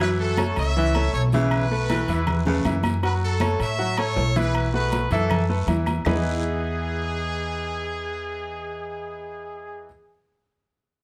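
Sunny and festive, this salsa excerpt opens with a tight, vibrato-laden trumpet section carrying the melody over a brilliant grand piano with audible action noise and a thumpy, woody upright bass played pizzicato up front, while a gritty, growling baritone saxophone adds a second line for the first 2.8 seconds. Ringing agogo bells and timbales, damped high-tuned congas and a raspy guiro sit in the background, joined at 0.4 seconds by very quiet dry claves, until the percussion drops out at 6.1 seconds, when the harmony settles from B7sus4 onto Emaj7. Light reverb colours the mix as the trumpets, piano and bass carry on to the end.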